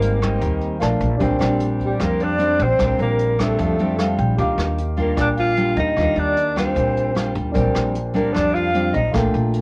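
A home-cassette sound with moderate studio reverb frames this breezy, romantic bossa nova fragment at 151 BPM in Bb major, where a breathy, subtoned tenor saxophone carries the melody up front over full-bodied fingerpicked nylon-string guitar, a natural-toned grand piano with a brief fill at 3.8 seconds, woody pizzicato upright bass and a brushed drum kit with a boomy kick, while an airy, unsteady concert flute enters in the background at 1.8 seconds.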